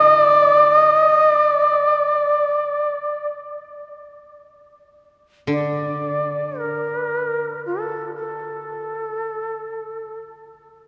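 A long, cathedral-like reverb fills this short cut from a longer piece of austere, solitary Japanese chamber music in free time. Up front, an airy, reedy bamboo shakuhachi carries the melody with vibrato and tongued notes, its highs rolled off, while a woody koto plucked with fingerpicks sits quietly beneath as accompaniment until 8.7 seconds. A buzzing, percussive shamisen adds a barely audible second line before stopping at 3.3 seconds.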